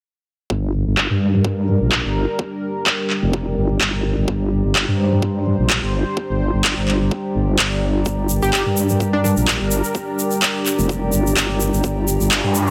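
A nasal, wobbling vowel-sweep bass sits up front in this gritty, bouncy bass house excerpt, its formant-filtered tone saturated, compressed and thickened with chorus as sidechain pumping makes it breathe. Beneath it, an overdriven, knocking electronic kick and layered, overdriven handclaps placed forward in the mix carry a 4/4 groove with a light swing on the sixteenths. A full-bodied, evolving pad made of detuned sawtooth with a sub octave holds sustained chords through a slow filter swell, while a mellow, lo-fi tape-like pad floats higher, warbling with phaser, chorus and its own reverb for a nostalgic haze. From 8.1 s a grainy, close egg shaker joins, and at 8.4 s a catchy, bright unison lead of detuned sawtooth adds a brief punchy phrase trailed by tape echo. An electronic riser enters at 12.1 s as the passage is cut off, all set in a light digital ambience.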